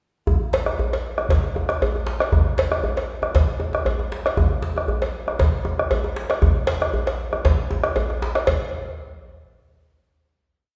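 A round, up-front bombo opens this short, earthy and festive West African drum ensemble piece in 4/4, entering at 0.3 seconds alongside a tight, cracking djembe struck with hard hands, both playing evenly spread patterns with a light swing on the sixteenths. A close, metallic cowbell joins at 0.5 seconds with a bell pattern, and the group plays through a single section before a final hit at 8.5 seconds. The recording sits in a reverberant hall, giving the drums a lingering, churchlike ring.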